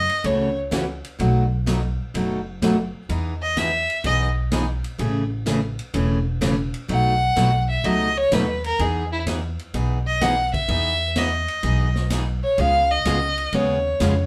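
Western swing country with a cheerful, swinging feel, moving at 126 BPM in 4/4 with a 69% swing on the eighth notes, in E major. A rich, focused fiddle carries the melody as a solo throughout, bowed with light vibrato and a smooth top, sitting up front in the mix. Beneath it, a woody, thumpy upright bass played pizzicato anchors the low end, while a bright, full-bodied picked steel-string acoustic guitar with fresh strings fills in the accompaniment. The drum kit sits distant and roomy, with dark cymbals, a medium-tuned snare and a boomy kick, its top rolled off, and it keeps hi-hat, ride, snare and kick going under the band. Recorded as a band playing live in one room with a wet studio reverb, this cut from a longer piece moves through F#m7, B7, Emaj7 and Amaj7 before landing on C#7 at 12.6 seconds.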